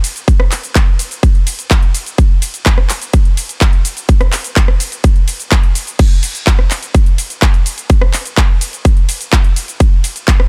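A big-room dance drum kit opens this euphoric, uplifting EDM cut from a longer piece, its crash cymbal, handclaps, hi-hat, ride cymbal, rim click and shaker layered into a produced, overdriven electronic texture. Moments later, at 0.3 seconds, an electronic kick drum arrives and sits up front, punchy and gritty with its own overdrive, louder than the rest of the kit. The music stays in a straight, driving 4/4 groove throughout, with the whole passage feeling like a drop that restarts at 6.0 seconds and carries the same section again. A digital ambience surrounds the percussion, giving the beat a polished, club-ready sheen. The kick drops out at 10.4 seconds, just before the kit finishes at 10.5 seconds.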